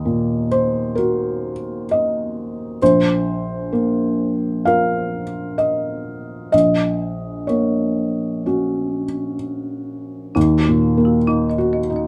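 A muted, intimate piano sound opens this short cut from a longer neoclassical piece, with the felt-muted upright piano placed up front in a moderate studio reverb. At a slow 64 BPM in 4/4, played with a rubato feel in Eb dorian, the music carries a longing, melancholic mood. The piano supplies the accompaniment throughout, its tone soft, mellow, dark and boxy, with audible action noise close at hand. Its harmony moves from Ebm to Bbsus2 and then Gb/Bb before returning to Ebm at 10.4 seconds. At 10.3 seconds a folk marimba struck with medium hard mallets enters with arpeggios, its hardwood bars sounding woody, dry and rustic, and it sits quieter than the piano.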